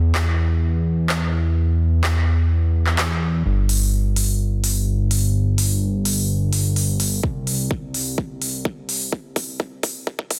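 Euphoric and triumphant, this short excerpt from a longer festival progressive house track drives along at 127 BPM in a straight 4/4. A fat analog bass carries the low end from the very start, its thick, detuned sawtooth tone saturated and evolving, with a filter pluck, fast attack, sustained notes and sidechain pumping that keeps it breathing with the groove. A big-room dance drum kit enters at 0.1 seconds with crisp hi-hats and handclaps, overdriven and layered, with a sense of having been re-recorded in a large room. After the opening section, a build-up and filter sweep take hold from 3.5 seconds, and at 7.2 seconds a punchy, layered electronic kick arrives up front as a drum fill carries the excerpt to its close. The mix is dry, dense and heavily limited, with a high-pass filter shaping the overall sound.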